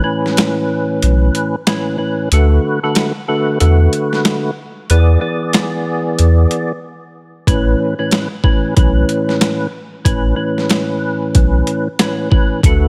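Boom-bap hip-hop at 93 BPM in A major, this short cut from a longer piece carries a confident, soulful mood over a 4/4 groove with a 60% swing on the sixteenths. A percussive tonewheel organ opens at 0.0 s, fat and clean with audible key click and third-harmonic percussion, coloured by chorus vibrato, a slow rotary speaker and a cassette-tape haze that is trimmed at both ends by filtering. The sampler-style drum kit follows at 0.3 s with hi-hat, a thumpy kick and a medium-tuned snare, sounding gritty, compressed and overdriven, as if re-recorded in a small room and pushed up front. At 1.0 s a deep, round sine sub bass arrives with a fast attack and sustained notes, sitting loudest in the mix. The passage starts as a break running to 7.5 s, while the harmony moves through Aadd9, D6 and E7 before returning to Aadd9. Light reverb and a digital ambience lend a touch of space around the forward-placed parts.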